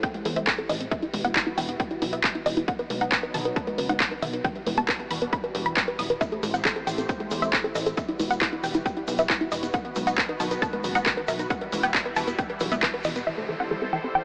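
Driving and euphoric, this uplifting trance excerpt sets a lush, detuned unison pluck melody over a warm, evolving supersaw swell and a tight sequenced arpeggio, both filter-swept in the background, while the pluck, pad, arpeggio and a punchy, funky analog bass all pump against the sidechain through a cycle of Am7, Emadd9 and B. Overdriven electronic drums pair a heavy layered kick with up-front congas, handclaps and hi-hat, a grainy, distant egg shaker joins at 6.2 s, and after a band accent at 12.8 s a very quiet impact closes things from 13.3 s. The whole mix carries light digital reverb and an AM-radio colour with faint mains hum.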